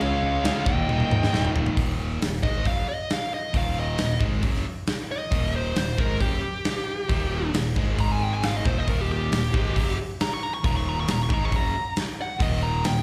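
Hard rock with an energetic, swaggering feel, this live clip, cut from a longer piece, is heard through a club PA in a straight 4/4 with light room reverb. A big acoustic drum kit sits up front with bright cymbals, a medium-tuned snare and a punchy kick, and it plays a fill from 0.9 to 1.8 seconds. Beneath it, a growling picked bass, warm and overdriven, drives alongside a distorted electric guitar riff with overdrive and slapback echo. Two very quiet riff guitars add weight at the opening: one crunchy and picked, the other double-tracked and compressed, and the crunchy one returns at 8.9 seconds. A bluesy distorted lead guitar lingers in the background at the start, while a dark, smooth overdriven lead carries the melody up front throughout and takes a solo from 1.8 seconds, bathed in plate reverb, slapback and tape echo.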